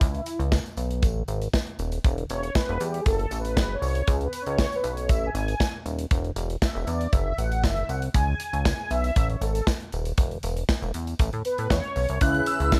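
Dry, this feel-good, danceable early-eighties boogie funk excerpt puts a studio drum kit with a punchy kick and a medium-tuned snare, a glossy, nasal chorused synth bass and dark, brassy chorused synth brass up front, with a jingly tambourine in the background and an analog polysynth solo running until 12.2 seconds, when a shimmering, dreamy FM bell with a halo of ensemble chorus enters.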